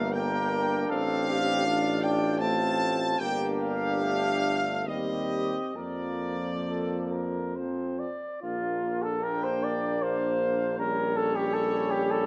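A serene, hymn-like classical excerpt for brass band opens with all parts sounding together: a mellow trumpet section carries the melody up front with light vibrato and soft attacks, while a flugelhorn sings a roomy second line, a clear solo trombone and a trombone section sit behind as accompaniment, and a vintage-toned tuba supplies the bass. In Bb major and 3/4, the playing moves with a rubato feel between 65 and 81 BPM, the harmony turning from G minor shadings toward a new section at 8.4 s, where a Bb chord darkens to Bbm6 at 10.8 s. The close, detailed sound is framed by a moderate scoring-stage reverb, and the excerpt breaks off at 12.3 s.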